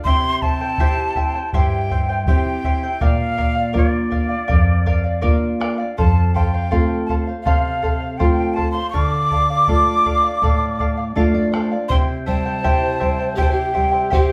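A straight 4/4 pulse at 81 BPM, carried by a round bombo, drives this short cut from an Andean folk piece, whose melancholic yet festive mood moves through C, Bb, F and Dm. A breathy, cane-toned quena with vibrato and a chiffy attack sings the melody over a shimmering charango and an up-front, full-bodied nylon-string guitar, which plays a fill from 10.8 to 11.9 seconds. At 11.9 seconds a hollow bamboo pan flute enters with a second line, and the ensemble sounds like a band playing live in one room, bathed in a large studio reverb.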